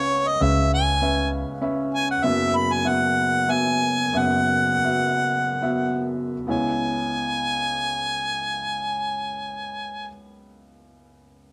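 A home recording on cassette, with a small room's moderate reverb, carries this reflective, heartbroken folk excerpt in 3/4, where a clear harmonica with light vibrato sings the up-front melody until 10.1 s over a soft, mellow felt-muted upright piano with audible action noise, a round, punchy fretless electric bass sounds a single C#2 only briefly near the start, and the pace slows from 2.2 to 6.5 s as C#m7 moves to F#7sus4 and back.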